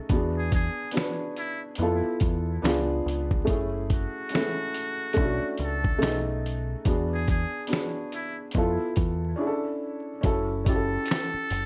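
Melancholic and reflective, this lo-fi hip hop piece sits at a swung 71 BPM in 4/4, with a felt-muted upright piano playing soft, boxy chords through cassette-tape coloring and a low-pass filter, over a round, dark dub-style electric bass and a gritty, compressed sampler drum kit with a thumpy kick and hi-hat. From 0.4 seconds a trumpet with a metal mute carries the melody, buzzy and breathy with light vibrato, filtered and trailed by analog delay. After a break at 9.4 seconds, barely audible finger snaps appear briefly near 11.1 seconds, all wrapped in vinyl crackle and a modest studio reverb in this clip cut from a longer piece.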